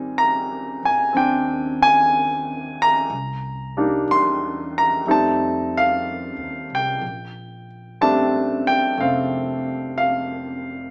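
Tender and intimate, this short cut from a longer jazz ballad moves at a slow 61 BPM in 4/4 with a gentle swing, settled in Bb major as the chords pass from Abmaj9 through Cm7 and F9 to Bbmaj13. A clear, polished baby grand piano sits up front with short sustain, carrying the accompaniment throughout the 10.9 seconds, while a pizzicato upright bass with a woody, growly tone plays the low line far beneath it in the mix. The band sounds as if playing live in one room, bathed in a wet studio reverb, with the small-speaker character of the recording.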